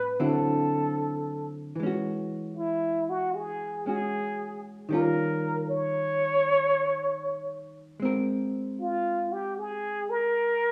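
A moderate studio reverb and the ambience of a small room surround this short, intimate cut from a late-night jazz ballad, played live at a slow 77 BPM with a swung 4/4 feel. Up front, a trumpet with a plunger mute sings the melody in a breathy, whispered tone, with wah-wah colour, vibrato, soft attacks and scooped notes. A dark, clean electric hollow-body guitar supports it with picked chords moving from D9 through E69 and Eb9 to Abadd9 at 8.0 seconds.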